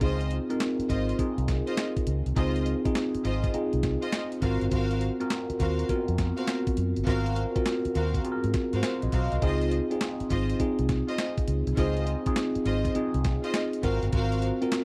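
A worn, slightly out-of-tune tine electric piano with overdrive and phaser sets this flirty, upbeat new jack swing R&B groove at 102 BPM in Db major, sounding from the first moment alongside a dark, round, foam-muted fingered bass with tube saturation, a crisp 8-bit drum machine with thumpy kick, medium-tuned snare, handclaps and hi-hat, and lush, bowed string stabs carrying tape echo, swinging on the sixteenths over Dbmaj9 and Ab13 in a dry, close 1970s-style studio sound, with a short electric piano fill arriving at 8.5 seconds.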